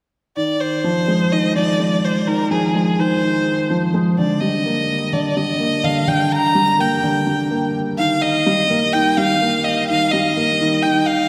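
Hypnotic and melancholic, this short electronica fragment, cut from a longer piece, moves in a straight, steady four-beat pulse. A felt-muted upright piano carries a repeating riff in its lower-middle register, its tone soft, boxy and intimate, sitting close and up front. Above it, a single bowed violin plays the melody with a rich, focused sound and vibrato, also placed near the listener. Both parts run together from 0.4 to 11.3 seconds, moving through Fm7, Gm and Eb. A wet concert hall reverb with a long tail surrounds them, giving the close, dark-hued piano and the rich violin a spacious, lingering setting.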